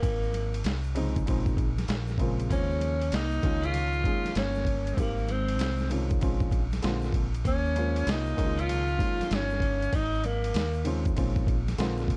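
A worn, warbling cassette-tape sound with drifting pitch and light reverb frames this smoky, cool jazz-hop fragment in Bb dorian at 97 BPM, swung on the sixteenths over chords moving from Abmaj9 through Bbm11, Eb13sus4 and Db69. A breathy, whispered tenor saxophone carries the melody with vibrato and scooped notes, while a slightly broken-up electric guitar with subtle chorus sits in the background on a second line, both stopping at 10.9 seconds. Up front, a gritty, overdriven sampler-style kit with a thumpy kick and a round, punchy dub bass anchor the groove, joined by a very quiet egg shaker and congas, and a dark, mellow grand piano entering at 0.9 seconds.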